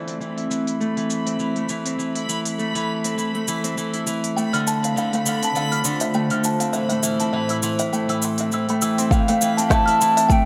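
Folktronica with a pastoral, delicate mood and a gentle swung feel, built on a warbling, nostalgic tape-like pad with chorus sitting in the background, bright ringing Celtic harp arpeggios up front through a low-pass filter and delay, a dreamy reversed granular texture, and an organic electronic kit of woody snare, smooth hats and shaker. A woody, hollow-boxed kalimba enters at 4.4 s with a short, vintage thumbnail-plucked second line through tape echo. At 9.1 s a pure, hollow concert flute with vibrato takes the melody as a deep electronic kick arrives up front, all set in a moderate echo-chamber reverb.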